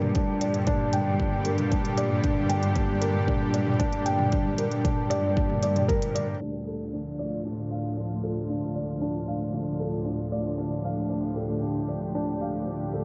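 This moving, cinematic piece of piano and strings electronica opens with a thick, detuned sawtooth pad sustaining chords up front with chorus, while a felt-muted upright piano plays a soft, dark riff through tape echo and a distant, bowed cello section carries the bass line with vibrato and sidechain pumping. Underneath, a deep, layered electronic kick joins an organic electronic drum kit of smooth hi-hats and toms, both set in studio reverb. The harmony rests on G minor in the opening passage before moving to D minor at 6.4 seconds. The drums drop out by 6.3 seconds, and a faint electronic downlifter sits in the background until 10.6 seconds as the pad, piano and cellos carry on. The whole mix has light digital ambience and a rolled-off, muffled top end, and the recording is cut from a longer piece.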